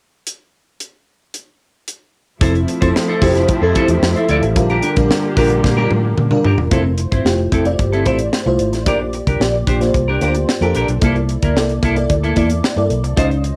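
A lush, chorused FM electric piano with a soft pad layer sits up front in this breezy, urban cut from a longer piece of polished 1980s jazz-funk pop at 112 BPM in F major, entering at 2.4 seconds alongside a twangy clean guitar riff, a round, foam-muted fingered bass and a bowed string section gliding with portamento until 6.7 seconds, all over a crisp fusion drum kit with a high-tuned snare that plays alone from 0.3 seconds and later adds a fill, as Fmaj7 and Bb6 chords give way to C13 in a home cassette recording with moderate studio reverb.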